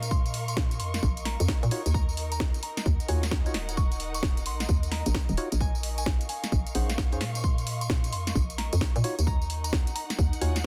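Skippy and late-night, this short cut from a two-step UK garage track swings on a punchy, tape-warm kick up front and a house kit with a cracking, softly clipped snare, hi-hat and tambourine, while a hollow, bouncy FM bass knocks beneath an airy, breathy pad and bowed studio strings with vibrato and portamento, both pumping with sidechain, as a soft, pure synth bell with chorus and tape echo sits in the background and a dark, nasal, percussive organ stab with chorus and delay enters at 1.7 seconds over minor add-nine, ninth and eleventh chords in a dense, heavily limited digital ambience.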